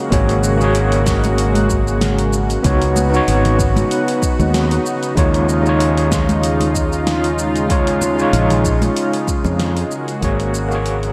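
Relaxed and warm, this sunset chillout excerpt in Eb minor moves at an unhurried 95 BPM with a gentle swing on the sixteenths, its dreamy mix soaked in plate reverb. A lush, thick unison pad sits up front holding sustained chords, its detuned sawtooth tone warbling with chorus as the harmony moves through suspended ninth chords. An overdriven tine electric piano adds barky, gritty accompaniment through a combo amp, shimmering with medium tremolo and delay. Underneath, a round, punchy fretless electric bass gives the groove a dark, tube-saturated foundation, while a deep house kit of hi-hat, shaker and fat snare pairs with a deep, tape-tinged electronic kick. Very quiet, close and dry congas played with hard hands appear at 1.2 seconds, and the whole passage fades out from 8.5 seconds to its end at 11.1.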